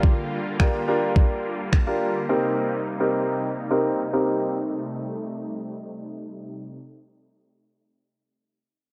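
A straight pulse opens this short, confident dance-pop excerpt, with a knocking, overdriven kick and layered finger snaps sitting up front before the drums drop away at 1.9 seconds. An intimate concert grand piano carries the accompaniment in the middle register, its short sustain and audible action noise pumping against the sidechain and dulled by a low-pass filter until it stops at 4.6 seconds. Beneath it, a detuned sawtooth supersaw swells in slowly with sustained chords, bright yet filtered and pumping too, evolving through a filter sweep that runs the full length of the clip. A barely audible electronic downlifter slips through early on, while the harmony moves from Bb6 to Cm7 at 2.3 seconds. The whole mix sits in light digital reverb and carries the worn, warbling pitch drift of old cassette tape, giving its energetic push a hazy, nostalgic sheen.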